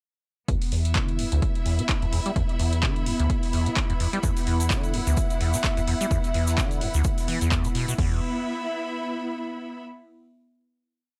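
Gritty and driving, this short acid house piece rides a swung groove from 0.5 seconds until a final chord rings out at 8.0 seconds. A squelchy, resonant liquid acid bass carries the riff, its sawtooth line of accents and slides moving under a filter sweep with overdrive and subtle chorus. An overdriven, punchy electronic kick sits up front in four-on-the-floor, joined by an analog drum machine's metallic hats, handclaps on the backbeat and a crash. A bright, lush string section bowed with vibrato provides a texture of slowly shifting chords, pumping against the sidechain and lingering until 9.8 seconds. At 4.2 seconds a mellow analog pad enters in the background with a held high note, alongside a grainy tube shaker in hand-played sixteenths and a barely audible, dry 70s breakbeat loop with a fat snare. A moderate room ambience frames the mix.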